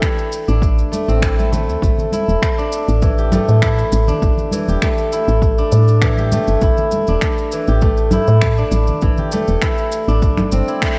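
Mystical and earthy, this short organic downtempo cut, taken from a longer piece, sits on a lightly swung groove over a single A minor chord. An up-front steel-string zither, played with fingerpicks, rings out silvery arpeggios through an analog delay from the opening moment. Beneath it, a woody FM bass enters at 0.5 seconds with a round, dark tone and fast, decaying notes, pumping against a punchy, overdriven electronic kick drum. Tape-warm electronic finger snaps, shaker and congas add produced texture, while a separate set of bright acoustic congas joins in the background at 0.9 seconds. A lush hall reverb soaks the mix in a dreamy haze, and the band lands an accent together at 10.8 seconds.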